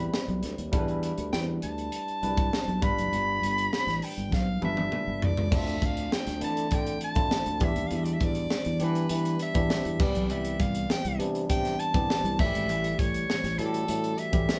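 A straight feel in 4/4 comes from a tight funk drum kit, up front and mid-forward, with a high-tuned snare, a tight kick, hi-hat, crash cymbal and toms, and a drum fill from 4.3 to 5.5 seconds leading into the second section. Underneath, a sustaining fretless electric bass sounds growly and punchy, its bright, direct, amped tone holding down the low end, while a barky tine electric piano, lightly overdriven through a combo amp, fills in the accompanying chords. On top, a breathy soprano saxophone carries the melody as a jazz-style solo, intimate and almost whispered, with a soft attack, light vibrato and scooped notes. The mood is urban and breezy, a polished slice of 1980s jazz-funk pop, cut from a longer piece. The band plays live together in a small, wet room whose short reverb gives the whole take a close, lively air, and the harmony moves from Cmaj7 and Em7 through G7 before shifting to Dm9 at 5.5 seconds and closing on A7.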